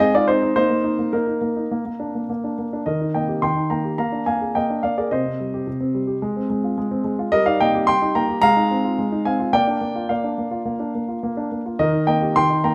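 A baby grand piano opens this cheerful, playful classical-period sonatina on its own, sounding polished and up front. It plays the whole 12.7-second excerpt, cut from a longer piece, and moves in an even, straight four-beat metre across a range from C3 to C6. A short opening phrase settles on a Bb chord before a longer second passage begins at 2.9 seconds. That passage moves through Bb7, Cm and Fm harmonies and comes to rest on Eb near the close. Close, detailed microphones keep the instrument present, with a light reverb around it.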